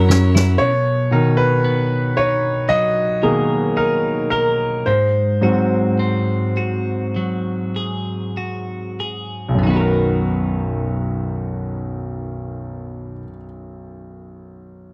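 A tender, emotional pop ballad fragment opens with a brief snare drum fill, a growly fretless electric bass with analog chorus, and very quiet, earthy chamber strings holding sustained chords, all of which stop at 0.6 seconds. From there a clear, smooth concert grand piano with deep bass takes a solo passage as the music slows through 9.6 seconds, while a bright, twangy twelve-string electric guitar with a warbly pitch drift picks arpeggios until 13.4 seconds. The sound is dry and close, in the manner of a 1970s studio recording.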